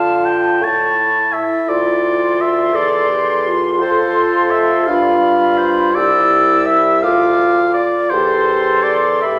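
A slow, rubato wind quintet movement in 6/8 at 56 BPM, solemn and melancholic, opens with all five parts sounding together for the whole 9.4-second excerpt cut from a longer piece, as an airy silver flute with a soft attack and vibrato carries the high melody, an up-front oboe with a smooth top sings a second line beneath it, a clear French horn with light vibrato and a distant, roomy clarinet fill in the accompaniment, and a mellow bassoon anchors the bass, all bathed in a wet scoring-stage reverb while the harmony drifts from D minor into C major from 3.8 s.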